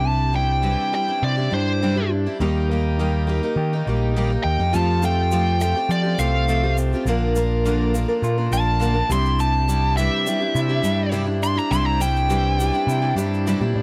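Jangly and open-road, this straight 103 BPM folk and heartland rock excerpt features a biting, overdriven lead guitar soloing up front over a shimmering, octave-doubled twelve-string acoustic, a slightly broken-up riff from an electric guitar through a small old amp, a round, punchy picked bass, a very quiet shouting tonewheel organ holding chords, and a grainy egg shaker that joins in the background at 4.7 seconds, all cut in a dry, close 1970s-style studio sound as the chords move from Cadd9 through Eb, Fadd9 and Bb.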